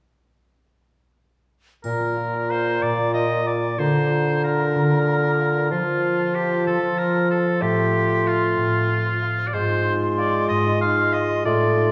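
Sweeping and festive, this short cut from a longer classical ballroom waltz moves at 187 BPM in 3/4 with uneven, rubato beats in Bb major, as a clear, distant oboe with light vibrato sits up front over a background of airy, metallic flute with vibrato and a smooth clarinet. A ringing concert harp spreads arpeggios across its range, while a mellow bassoon carries the accompaniment from 1.9 seconds. A bright, close triangle touches in briefly at 1.8 seconds, all within a dark production and a recital hall reverb as the harmony moves from Bb through F to a closing Fm7/Ab.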